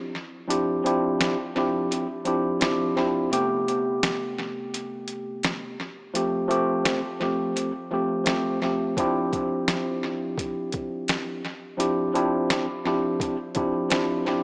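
A worn tine electric piano opens this dark, moody boom-bap hip-hop excerpt. It sits up front, slightly out of tune and lightly overdriven through a combo amp, with filtering and tape echo shaping its tone as it comps between C3 and G4. The harmony moves from Dm11 to Am9 and G9sus4 before returning to Dm11 at 9.0 seconds, all in D dorian with the tuning set at A4 = 441 Hz. A sampler-style drum kit enters at 0.5 seconds with a thumpy kick, a medium-tuned snare and hi-hat. The drums sound compressed, pitched down and gritty, with a tape-warm character and their own touch of tape echo. The groove runs at 85 BPM in 4/4 with a light swing on the sixteenths, and the whole mix has an echo-heavy, small-speaker sound with light digital ambience.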